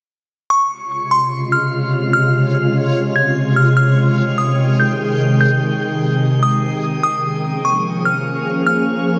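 A half-time feel in 4/4 at 147 BPM gives this hip hop excerpt a slow, floating pulse, and its mood is blissful and floating, tuned slightly below standard pitch at A4 = 439 Hz. A delicate, tinkling FM synth bell carries the melody from 0.5 s, sitting up front high in its register, with fast-attack notes that decay and are colored by chorus, a low-pass filter and tape echo. From 1.1 s an ethereal, airy pad holds sustained chords beneath it, its detuned sawtooth and triangle layers wave-folded yet mellow, blooming with a slow attack and long release through ensemble chorus and its own reverb. Alongside the pad, a faint reversed texture swells in, dreamy and bright, built from detuned granular triangle tones. The harmony moves from Dbmaj7 to Abmaj7 to Bbm7, and a moderate shimmer reverb with a 4.4-second tail surrounds the sound in a glistening haze.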